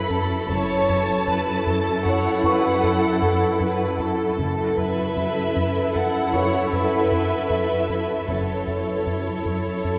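A tense, eerie suspense film score cue at 77 BPM in 5/4, cut from a longer piece and resting on an F#m7 chord, where lush bowed violins with vibrato carry a focused high melody over a distant second violin line, intense violas and expressive cellos, while a rubbery, hollow square bass plays a riff on F#2, a very quiet felt-muted upright piano adds intimate, mellow texture, and woody double basses enter at 0.5 s, all bathed in a wet cathedral reverb.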